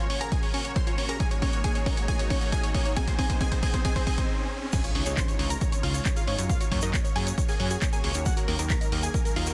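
This soaring, euphoric uplifting trance excerpt opens on an airy, detuned supersaw stab melody with dub echo and sidechain pumping, shadowed by a very quiet unison pluck, a lush phased pad, a nasal sequenced arpeggio, a faint riser and a punchy analog drum machine and up-front kick driving a build-up with a drum fill, then after a brief stop an impact lands at 4.7 seconds as a grainy tube shaker and a funky, tube-saturated analog bass join the drop in a dense, heavily limited mix.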